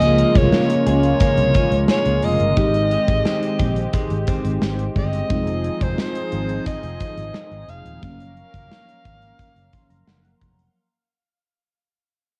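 A gated 80s drum kit with a tight kick and medium-tuned snare drives a straight 88 BPM groove under a growly, bright fretless bass in this nostalgic yet urgent 1980s-style pop excerpt, where a breathy, intimate alto saxophone carries the melody up front over Db6, Abmaj7, Fm7 and Gbmaj7 chords, a detuned sawtooth analog pad with chorus and tremolo sustains beneath, a dreamy FM electric piano with a soft pad layer and phaser sits in the background before adding a fill at 9.4 s, and a clean, direct-recorded electric guitar riff soaked in lush chorus and tape echo drops out at 5.9 s, all fading out through a home cassette recording with light reverb.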